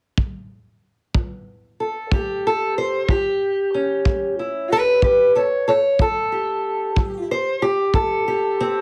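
Heavily compressed and tape-saturated with a radio-like grit and a moderate studio reverb, this short cut from a longer piece of acoustic country blues rolls along in a rollicking 12/8. A dark, punchy kick drum with a brushed touch sits up front from 0.2 seconds, before a boxy, parlour-style fingerpicked steel-string acoustic guitar enters at 1.1 seconds over an A7 chord. The guitar carries the melody across a range spanning A2 to C#5 through to 8.8 seconds.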